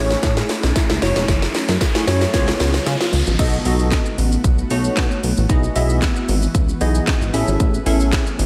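Driving and bittersweet, this dance-pop excerpt sets a glossy, up-front chorused synth bass, a crystalline wavetable pluck and an airy ethereal pad, all sidechain-pumped, beneath a punchy, tape-warm house drum kit with cracking snare and metallic hats. A background riser, gentle dark pluck arpeggios and a barely audible jingly tambourine carry the drum-fill build-up until 3.4 seconds, before the drop opens into a big arena sound bathed in lush hall reverb.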